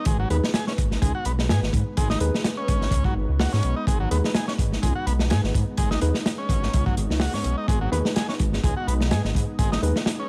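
A crunchy breakbeat drum kit sits up front, its saturated kick, snare and hi-hat sounding gritty and dark with a rolled-off top in a small room. The groove runs at 126 BPM in 4/4 with a light swing on the sixteenths, giving this funky, raw breakbeat cut a loose push in G# minor, resting on a single G#m chord throughout. Beneath it, a deep, rumbling detuned saw bass adds beating unison weight, while a vintage combo organ plays a buzzy riff with heavy vibrato, overdrive and dub echo. A mellow tine electric piano drops stabs from 0.3 seconds, treated with dub echo and sitting in the background. Behind them all, a phased analog pad holds swirling, evolving sustained chords with chorus, 12-bit sampler grit and sidechain pumping, and vinyl crackle colours the whole short clip taken from a longer piece.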